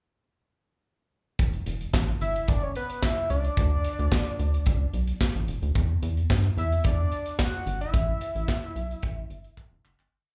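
A four-on-the-floor boogie beat at 110 BPM in straight 4/4 kicks in at 1.4 seconds on a polished, airy studio kit, with a punchy kick and snare layered with handclaps, alongside a rubbery, hollow square-wave bass playing a fat syncopated line in E dorian. From 2.2 seconds a fat analog lead sings mellow, motif-based phrases, thickened by detuning, a sub octave, chorus, vibrato, plate reverb, slapback and tape echo, over Em, D5, Em7 and Asus2 chords. This danceable, late-night early-eighties boogie funk piece is heard as a live gig through the venue's PA with club reverb, and it fades out from 7.9 seconds, with a closing drum fill arriving at 9.6 seconds.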